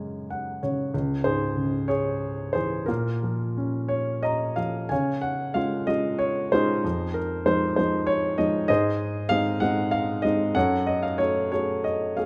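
A warm grand piano carries this reflective, wistful classical passage alone, sitting up front with an intimate, natural tone, short sustain and audible action noise. It moves in 6/8 at around 58-65 BPM in dotted quarters, with a free, rubato feel, and spans from Db2 up to Bb5. The music opens in Bb minor with a brief fill over a Gbsus2 chord, passing through Dbm and Bbm before another fill just before 4.9 seconds. At that point the harmony brightens into Db major, unfolding through Fm7 and Ab before settling on a Gbmadd9. A moderate recital hall reverb surrounds the playing, and the 12.3-second passage is cut from a longer piece.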